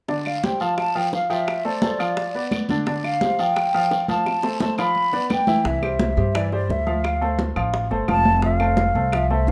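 A danceable, straight 4/4 groove in Cuban son and guajira style at 173 BPM in C major carries an airy, vibrato-laden silver concert flute melody over clear, up-front baby grand piano arpeggios, bright high-tuned congas, tight dry bongos, woody claves and a raspy guiro that drops out at 5.6 seconds, where a thumpy, dark gut-string upright bass enters up front after a drum fill, all under light reverb in this short cut from a longer piece.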